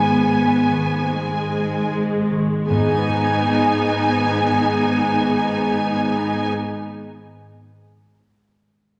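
An intense, up-front viola section carries the accompaniment through this solemn, yearning fragment of a slow romantic orchestral movement in G# minor, set at 39 BPM in 4/4 with a rubato feel that slows over the first 2.7 seconds. A distant, smooth violin section sings the melody over a lush second violin line, mellow sustained French horn chords, ringing thumb-plucked concert harp arpeggios that linger to 6.8 seconds, and a bass of clear cellos and expressive double basses. Very quiet, articulate timpani with hard mallets enter at 2.7 seconds, and a wet scoring-stage reverb gives the whole ensemble a spacious glow.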